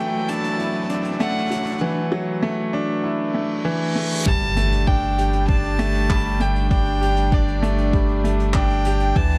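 Over a straight 4/4 pulse, this hopeful, tender piano-and-strings electronica excerpt opens with a brilliant baby grand riff up front, its action noise audible and its long sustain trailing into digital delay. A distant, floating violin melody played sul tasto moves through a filter sweep and delay, while a chamber string section holds earthy, lightly vibrato chords in the background with sidechain pumping, and a smooth, rolled-off brush kit with handclaps and hi-hat sits far behind. Background electronic effects build toward the drop at 4.3 seconds, where an impact lands, a deep, tape-toned kick enters, and a round, tube-saturated sine sub bass arrives up front with its own pumping, all within a dark mix and light small-room ambience.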